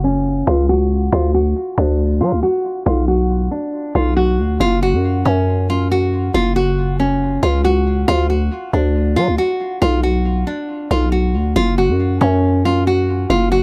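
Brooding and hard-hitting, this half-time hip hop excerpt pairs an up-front, fingerpicked nylon-string guitar melody, bright and full-bodied with audible finger squeak, treated with tape echo and a low-pass filter that sweeps over the opening 4.6 seconds, against a growling, buzzy 808-style bass with a fast attack and decaying tail, cycling through F#5, D and Bm in a dry, gritty hardware recording with faint mains hum.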